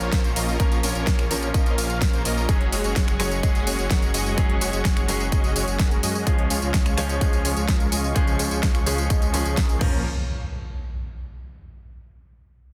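Emotional and euphoric, this festival progressive house excerpt drives at 127 BPM in a straight 4/4, moving through Bbm, Gbsus2 and Db before returning to Bbm. Huge, airy supersaw chords carry the riff with sidechain pumping, tape echo and a low-pass filter sweep, while a thick, detuned saw bass with chorus pumps beneath them under its own filter sweep. A punchy, overdriven electronic kick sits up front, joined by a layered big-room kit with a huge snare, metallic hats, finger snaps, tambourine and crash cymbal. In the background, a brilliant concert grand piano with short sustain plays accompaniment through pumping and tape echo, and a very quiet, slow-attack unison pad with chorus and phaser holds sustained chords. At 9.8 seconds an electronic impact lands up front just before the other parts drop out, carrying the dense, heavily limited mix and its light reverb into a brief unaccompanied moment.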